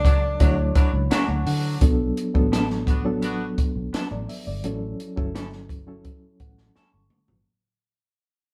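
This excerpt of lush, romantic 1970s-style soul opens on a band accent, with a breathy, whispered tenor saxophone sounding briefly and distantly over a reedy, worn electric piano with overdrive and fast tremolo, warm pop-style horn stabs that stop at 3.5 seconds, a round, foam-muted fingered bass and a compact cocktail drum kit up front with a punchy kick and a high-tuned snare. At 1.1 seconds a bright, twangy electric guitar at the edge of break-up takes up a riff, while the electric piano adds fills and the music fades out from 1.8 seconds. A drum fill closes the cut, and a moderate small-room reverb gives the smooth performance the feel of a band playing live together.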